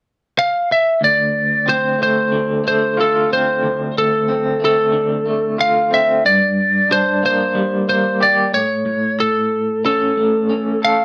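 Angsty and brooding, this rock excerpt in a straight 4/4 opens with a lightly driven, compressed lead guitar carrying the melody from 0.4 seconds, its picked tone bright and slightly broken-up. At 1.0 seconds a twangy electric guitar through a small old amp joins with tremolo-laced arpeggios under Dm7, moving on to Gm and then A. The band sounds as if it is playing live in one room, with moderate studio reverb giving the up-front guitars some space.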